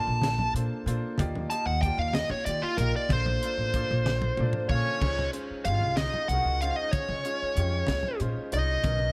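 Light reverb and a small-room ambience frame this brief cut from a longer piece of soaring, funky electric jazz fusion in 6/8, with a dark, smooth overdriven lead guitar up front taking a solo over lush major-ninth harmony, alongside a clear, open baby grand piano with long sustain. A woody, growly pizzicato upright bass sits prominently beneath, while a tight, dry funk kit with bright cymbals and a high-tuned snare is joined by damped, low-tuned congas sitting softly in the background. The drums play a fill from 4.1 seconds into the next section, and an airy, distant concert flute with vibrato and tape echo enters at 4.7 seconds as a quiet second line.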